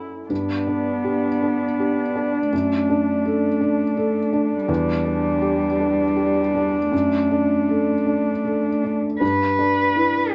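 Over a rubato 6/8 sway, this tender, intimate neoclassical fragment sets a soft, boxy felt-muted upright piano with audible action noise beside a veiled, con sordino viola staying on a single D4 with light vibrato, while a muted cello joins at 0.3 seconds as a second line with portamento, all moving through G, D/F#, Em7 and back to G in a dark production with light reverb.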